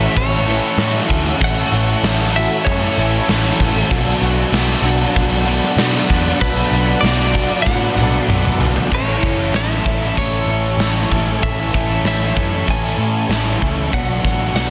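A punchy, gated 80s drum kit sits up front in this hazy, dreamy shoegaze and dream pop excerpt at 96 BPM in A major, entering at 0.2 s and rolling a fill from 7.7 to 8.9 s over an A6, Bm7, Amaj7 and Bm progression, while a twangy, direct-recorded clean electric guitar carries the melody through spring reverb and digital delay, a shimmering, ethereal ambient pad holds chords behind a phaser and chorus, two overdriven guitars play riffs in the background (a biting one with reverse reverb and a hollow-bodied semi-hollow with ensemble chorus), a boxy, octave-doubled fingerpicked twelve-string acoustic guitar plays very quiet arpeggios, and a dark, round, foam-muted picked bass anchors the low end within a small room and a dense, heavily limited modern master.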